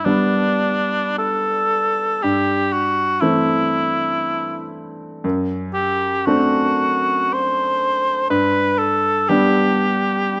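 From the opening moment, a cor anglais and a concert grand piano sound together in a tender romantic classical duo, a brief passage cut from a longer piece that lasts about 10.4 seconds. The cor anglais carries the melody up front with a warm, present tone and light vibrato, singing in a classical style within a modest middle range. Beneath it, the grand piano provides accompaniment that is bright and brilliant, with a deep, natural bass. The music moves in an unhurried triple metre with flexible rubato, its harmony drifting away from the home chord and settling back on it near the close. Close, detailed microphones and light reverb give the pair an intimate, clear presence.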